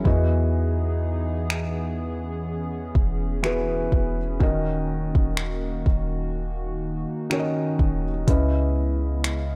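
A lightly swung 4/4 groove of finger snaps, metallic hi-hat and a soft kick from a small-room, produced electronic kit sits up front in this slow, longing, late-night contemporary R&B excerpt. A deep, boomy 808-style sine bass with a fast attack and decaying notes anchors an intimate felt-muted upright piano, mellow with audible action noise, as the harmony moves from Emaj7 to D#m7 at 4.4 seconds and C#m7 at 8.3 seconds. Behind them, a hollow, flute-like, detuned pad with a slow attack and chorus sustains the chords beneath a dark, ambient production.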